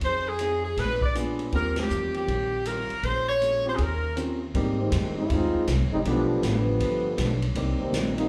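An edgy, close-miked saxophone section carries the melody up front in this joyful big band swing excerpt at 159 BPM in Eb major, its vibrato wrapped in plate reverb and slapback echo until it drops out at 4.2 seconds. An upright bass underpins the chords with a woody pizzicato tone, while a distant, roomy drum kit swings on hi-hat, ride, snare and a boomy kick, its top end rolled off. A very quiet, dark hollow-body electric guitar adds clean, picked, compressed comping. A concert grand piano with deep bass enters in the background at 1.1 seconds, and the whole band hits an accent shortly after. The key moves to Ab major, and at 4.8 seconds a tight, warm trombone section steps up front with a soft attack and light vibrato for a short solo passage over Abmaj7, G7 and Cm7 chords. The sound is that of a live gig heard through the venue's PA, with moderate club reverb and audible room ambience.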